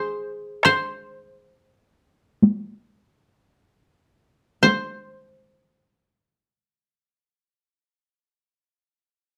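Meditative and solitary, this brief excerpt of Japanese chamber music in a free, rubato 4/4 features a mellow, woody koto played with fingerpicks carrying the melody up front from the start while a close, heavy-sticked taiko ensemble enters at 0.6 seconds and falls away at 5.2 seconds, all within a moderate studio reverb as the music slows through its opening 4.6 seconds.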